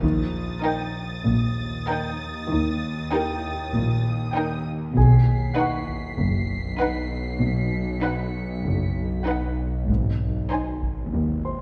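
Mysterious and ominous, this cinematic suspense excerpt moves at 97 BPM in 4/4 over chords of Eb, B and Ab, with veiled con sordino violin sections carrying a melody, a high texture and a warm second line above dark muted cellos and soft-attack double basses, a warbling, tense bowed-like drone up front with its own reverb, natural baby grand piano figures, and background taiko hits on heavy sticks at 0.0, 5.0 and 9.9 seconds, all set in a scoring-stage reverb.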